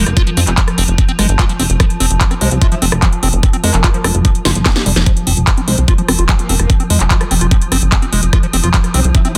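Psychedelic trance at 147 BPM in 4/4 with a straight feel, set in F harmonic minor, this hypnotic, alien passage is cut from a longer piece and runs about nine seconds. Up front, a knocking electronic kick and a drum kit of cracking snare, metallic hats, handclaps and rim clicks carry a tape-warm, small-room character, with a drum fill between 4.5 and 5.1 seconds. A punchy, funky analog bass built from sawtooth, square and sine waves sits prominently beneath them, its wave-folded filter pluck decaying into a mellow tail between F1 and F2. Above it, a squelchy, resonant acid bass plays a riff through a phaser and delay, pumping against the kick. Further back, a swarming, detuned drone holds an evolving, granular F3 chord with slow attack and long release, while a wobbling formant-sweep bass traces a second line through lush chorus and tape echo. The whole is a dense, heavily limited modern master in a digital ambience.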